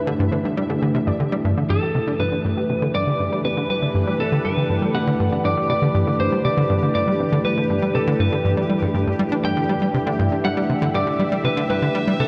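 Luminous and cosmic, this sequencer-driven piece of ambient space music unfolds in a vast, echoing space drenched in long cathedral reverb. A bright, detuned sawtooth pad sits up front holding sustained chords, its resonant filter swelling under a slow attack and long release, while a pulsing, tempo-synced triangle texture with chorus and its own reverb glimmers in the background throughout. Beneath them a punchy, funky analog bass with delay drives a plucky riff, and a warbling, lo-fi pluck with chorus and delay spins mellow arpeggios only until 1.3 seconds. At 1.7 seconds an electric lead guitar enters up front, lightly driven and slightly broken-up, playing a picked, compressed melody soaked in delay. The passage is cut from a longer piece and rests on a G chord from its opening moment.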